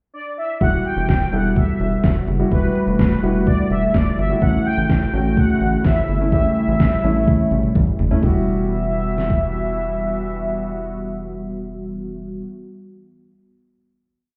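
An overdriven pop drum kit sits up front in this short, nocturnal and driving synth-pop piece at 126 BPM in E dorian, knocking out a straight drum-machine beat with a layered, produced sound, a knocking kick and a deep snare, and closing with a fill before it stops at 9.4 seconds. Entering during a brief pickup bar, a bold, fat synth brass carries a motif-based melody in song-like phrases, its detuned sawtooth tone given vibrato, a filter sweep, chorus and an analog delay. Beneath it, a rubbery square-wave bass pulses in eighth notes with a bouncy, hollow filter pluck, while a polished grand piano pushes closely voiced chords. A sweeping, resonant pad in the background slowly swells in with evolving, warbling sustained chords treated with chorus. The harmony moves from Emadd9 to A and back to Emadd9 for a held final chord, and the whole mix sounds muffled, as if heard through a wall into a club, inside a moderate, lush hall reverb.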